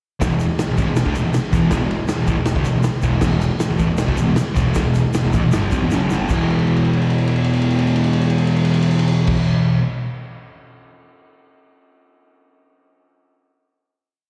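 A straight 4/4 garage stomp at 157 BPM drives this short, menacing and swaggering garage rock piece in E minor, where a punchy, saturated and gritty drum kit with a medium-tuned snare and rolled-off top backs an up-front, double-tracked fuzz guitar power-chord riff, doubled by a growly overdriven bass playing quarter notes while a grainy egg shaker sits in the background, until a drum fill at 5.9 seconds leads into a final E5 chord at 6.3 seconds and the drums outlast the other parts to 10.8 seconds, all heard as a live gig through the venue's PA with recital-hall reverb.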